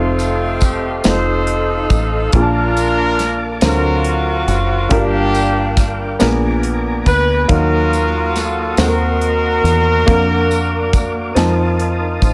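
A dry, close recording with little reverb, this slow gospel excerpt in 6/8 moves at 47 BPM in B-flat major and carries a reverent, soulful mood. A warm horn section, placed up front, sings the melody in a jazz style with soft attacks and light vibrato until 11.8 seconds. Beneath it, an intimate baby grand piano accompanies with short sustain and audible action noise, while a clear, clean tonewheel organ holds sustained chords in the background through a slow rotary speaker. A dark, round, foam-muted fingered electric bass sits up front, and from 0.2 seconds a polished acoustic drum kit with an airy small-room sound, tight kick and medium-tuned snare plays hi-hat, kick and snare alongside a jingly tambourine set back in the mix. The harmony travels from F7 through Bbmaj7, D7alt, Gm7 and Bb7b9 into the darker Ebmadd9 and Ebm6 before settling on Bb/F and returning to F7.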